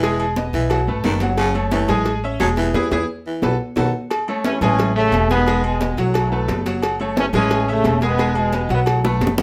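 A growling, raspy baritone saxophone opens this festive, danceable salsa excerpt at 176 BPM in E major, over a brilliant concert grand piano, a woody, thumpy pizzicato upright bass, and background percussion of ringing high-tuned congas, tight bongos with cowbell, and vintage metal-shell agogo bells and timbales. During a band accent and a drum fill, the saxophone drops out at 3.9 seconds, and a clear trombone section with light vibrato takes the melody up front at 4.4 seconds. The trombones ride a moderate studio reverb over a cycle of Amaj7, Emaj7, B5 and F#m7 chords until a final drum fill at 9.0 seconds.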